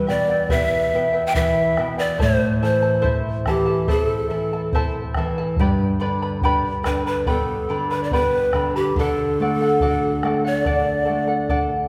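Breathy, mellow cane pan pipes carry the melody up front, with vibrato and a crisp, chiffy attack that makes the earthy line sound expressive and melancholic. This Andean folk excerpt moves at 71 BPM in a straight 4/4, tuned to A4 = 437 Hz. Underneath, a fingerpicked nylon-string guitar with a classical touch and a bright, shimmering charango with double strings work through Em, Am, G and D, while a round, band-limited bombo enters at 0.5 seconds, all set in the lingering reverb of a church or concert hall.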